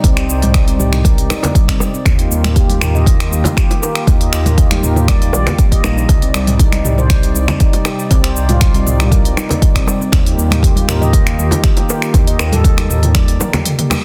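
Afro house at 119 BPM in straight 4/4, this hypnotic, spiritual passage is cut from a longer piece and moves between C minor and E-flat major. A deep electronic kick sits up front with studio reverb, joined by a layered deep house kit of finger snaps, smooth hi-hats, shaker and toms, with soft clipping on the snare and a short drum fill from 13.4 to 14.0 seconds. In the background, ringing congas struck with hard hands and tight, high-tuned bongos played with soft hands add close acoustic texture. A dark, detuned sawtooth bass rumbles and beats underneath, its sustained tones pumping with the sidechain, while a smooth analog pad holds mellow chords with chorus and the same pumping motion. Over this, a meditative stainless-steel handpan plays close-miked arpeggios with soft fingertips, its full, ringing tone sent through a digital delay. The dense, heavily limited modern master sits in a digital ambience.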